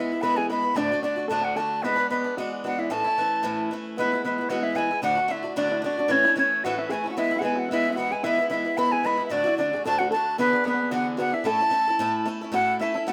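A moderate studio room gives this rollicking, cheerful Celtic reel a close, present sound, with a light swing on the eighth notes and a repeated strain that cycles through E, D, E7 and A. Up front, a wooden flute carries the melody with an airy, crisp attack, lifted highs and a touch of vibrato. Beneath it, a fingerpicked open-back banjo adds a plunky, twangy second line, while a boxy, forward swing-style acoustic guitar provides picked accompaniment with audible finger squeak.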